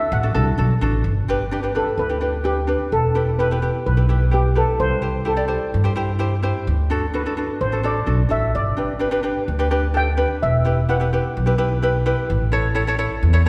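A mellow, shimmering double-seconds steel pan, played with soft rubber sticks, takes the melody in this sunny, festive calypso excerpt at 128 BPM in G major, moving into a solo from 1.1 seconds and falling silent at 11.6 seconds. Beneath it, a bright fingerpicked ukulele and a thumpy, woody pizzicato upright bass on gut strings sit up front, carrying a progression that runs from D through G, Em, C and D, then back through G and Em before landing on A. The whole performance is bathed in the lush reverb of a concert hall.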